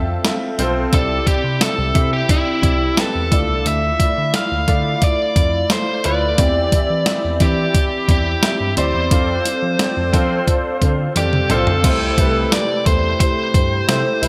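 Uplifting and nostalgic, this 1980s-style pop excerpt sets a dark, mellow baby grand piano with analog chorus over a bell-like tine electric piano carrying the bass line, while a clean 12-bit drum machine with a thumpy kick, medium-tuned snare and gated reverb enters at 0.2 seconds. An overdriven, biting lead guitar takes the melody from 0.9 seconds over chords such as Cadd9, Dmadd9 and F6. A drum fill leads into a new section at 11.8 seconds on Am7/C, all within a bright digital production bathed in plate reverb.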